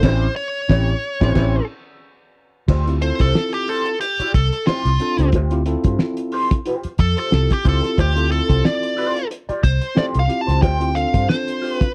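A nasal, overdriven lead guitar with a parked wah sits up front in this driving, dry 1970s-style funk clip at 91 BPM in D minor, opening with a band accent on A7#9 and a tine electric piano fill before the guitar takes a solo from 2.7 seconds over Dm11, while a mellow, clean electric guitar through wah, the piano's stabs, a round, foam-muted fingered bass and a cloth-damped, thuddy, lo-fi drum kit with a fat snare and dark cymbals keep a lightly swung sixteenth-note groove.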